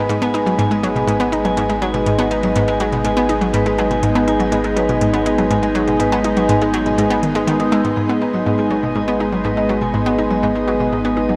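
A drenched shimmer reverb with an 8.5-second tail fills this expansive, mysterious fragment of sequencer-driven space music at 122 BPM in G# minor, where an evolving, morphing wavetable pad with chorus fades in over the first 8.0 seconds beneath a metallic, ringing vibraphone playing delayed arpeggios with slow motor vibrato. Up front, a detuned analog pluck with a sawtooth bite and fast attack repeats a chorused, delayed riff, while a deep sine sub bass holds a round, dark G#1 underneath. Electronic hi-hat and woodblock tick softly in the background until 7.9 s, just before the second section opens at 8.0 s.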